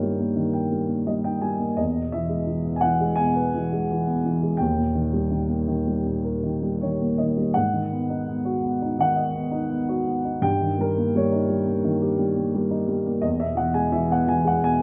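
A dark, woody upright piano plays alone from the start, with a short fill at 0.7 s, in this brooding, cool classical excerpt in G# minor at 85 BPM, taken with a free, rubato feel in 4/4. The mellow, up-front piano has a vintage character and long sustain, moving through chords such as D#/G, E, D# and G#m7. The same lyrical passage is stated twice, the second beginning at 7.6 s, in a moderate scoring-stage reverb.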